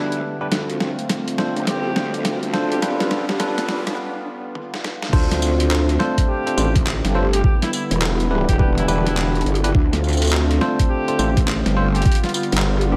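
This glitch hop excerpt opens on a smooth, warbling analog pad, bell-like tine electric piano stabs with a grainy 12-bit sampler edge, and a growling, wobbling bass, with the pad and piano pumping under sidechain, in D dorian at 104 BPM with a 16th-note swing. A distant, roomy trumpet carries a classical-style solo melody with vibrato through analog delay, while a very quiet electronic riser climbs beneath the build-up from 0.3 to 4.0 seconds. A gritty, overdriven boom bap sampler-style kit fills through the opening with snare, toms, hi-hat, handclaps, tambourine and crash, breaking briefly before the drop. At 5.1 seconds a thumpy, overdriven electronic kick arrives up front as the drop hits, pushing the swaggering mood harder over chords moving among Dm7, Em7 and G7. The saturated, detuned bass stays prominent throughout, and the whole mix sits dreamy and soaked in a lush hall reverb.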